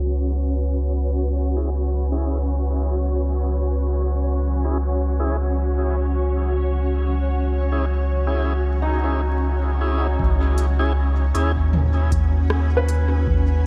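A round, up-front sub bass anchors this spacious, deep ambient dub fragment, holding low on C# minor at 78 BPM in 4/4 with a light sixteenth-note swing, its sine tone thickened by tube saturation. Above it, a cloudy, detuned granular pad sustains bright, blurred chords through the whole clip, while a breathy, wind-like noise layer sits in the background until 10.2 s, under a filter sweep that runs across that opening stretch. From 1.6 s a thick, lightly overdriven tonewheel organ plays stabs through a slow rotary speaker and dub echo, and at 8.8 s a felt-muted upright piano adds intimate, boxy arpeggios with audible action noise and tape echo. The drums arrive at 10.2 s with a deep analog kick, soon joined by an electronic kit of crisp hi-hats, rim clicks and toms, low-pass filtered, tape-warm and sent into dub echo, both re-recorded in a large room. Vinyl crackle, light reverb and a low-pass filter give the whole a hazy, dusty finish, and the clip is cut from a longer piece.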